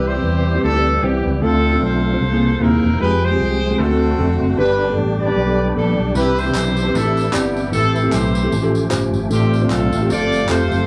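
An uplifting, reverent slice of uptempo gospel, cut from a longer piece, rides a swung feel in 4/4 with a band playing live together in a small room. A warm horn section carries the melody up front, ensemble-style with a light vibrato, while a mellow tine electric piano, slightly worn and a touch out of tune, supplies clean, direct accompaniment. Behind them, a reedy, bright tonewheel organ holds sustained chords with audible key click, a fast rotary speaker and chorus vibrato, sitting back in the mix. A fingered electric bass anchors the low end with a dark, round, amped tone. At 6.2 seconds, tambourine, maracas and group handclaps join in, adding an acoustic lift as the chords move through colorful altered dominants toward a suspended close.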